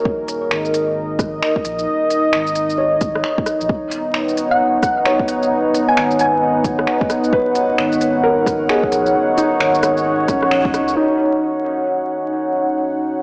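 Future garage with a nocturnal, melancholic mood and a swung feel: a detuned, moody analog pad with chorus sits up front over a felt-muted upright piano whose soft keys carry audible action noise through tape echo, both pumping against the beat. An overdriven, deep electronic kick and a crisp-hatted kit of finger snaps, rim clicks and shaker ride above a round sine sub bass, with a band accent at 10.5 seconds. A tine-like FM thumb-piano pluck warbles briefly from 4.5 to 6.6 seconds, and the lush hall reverb, cassette recording, vinyl crackle and small-speaker tone lend a worn, homemade haze.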